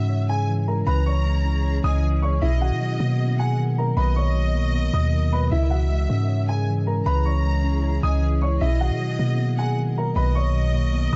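A deep, boomy 808-style bass sits up front in this brooding, hard-hitting hip hop excerpt, its fast attack and decaying tail driving a half-time feel over a C#m to Bmaj7 progression. A boxy grand piano carries the melody with delay, joined by a focused violin section that plays a bowed second line with vibrato and its own delay, while a clean, mellow tine electric piano supplies the accompaniment. From 0.6 s a cloudy, evolving granular pad holds sustained chords in the background, and the whole mix stays dry and dusky, with its top end rolled off above 7.7 kHz.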